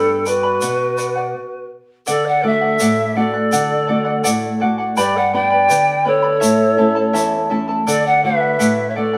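Andean folk played by a small ensemble at 83 BPM in a straight 2/4, carrying a mood that is melancholic yet festive in this short cut from a longer piece. A reedy bamboo pan flute leads the melody with an airy, vibrato-laden tone, a soft chiff on its attack and a slightly distant placement, sitting on top of the mix. Beneath it, a mellow large quena plays a second line with a straight, tongued, expressive wooden sound, while a shimmering, fingerpicked charango with double strings and a small fingerpicked nylon-string guitar with fresh strings and an audible finger squeak fill out the accompaniment. A grainy, band-limited tube shaker with a bright, vintage edge enters at 0.3 seconds and stops at 8.8 seconds. The band moves from G to Bm and then halts in a stop from 1.3 to 2.1 seconds before resuming on D for a passage that travels through G and A and returns to D. The players sound live together in a stone room with a moderate reverb tail.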